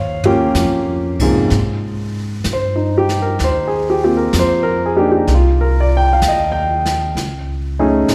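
Jazz ballad excerpt with a tender, late-night mood and a gentle swing, where an intimate, up-front baby grand piano with audible action noise voices lush chords such as Eb13 and Abmaj13 over a woody, growly pizzicato upright bass, while a brushed drum kit with dark cymbals and a boomy kick comes in at 0.2 seconds with a short fill, the ensemble set in a moderate concert-hall reverb.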